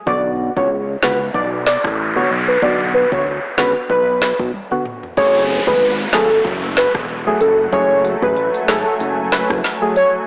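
A velvety, detuned synth lead carries the melody from the start over hollow, dark organ stabs with sidechain pumping, a fat sawtooth bass and a crisp, woody afro-pop drum kit in this sultry, bouncy dancehall excerpt at 94 BPM in F# minor, swung on the sixteenths, as a noise sweep enters at 0.9 s and a drum fill at 4.5 s leads the harmony from Bm to F#madd9, where a cloudy, evolving granular pad drifts in at 6.1 s, all soaked in a lush hall reverb and squeezed into a blown-out, overdriven AM radio sound.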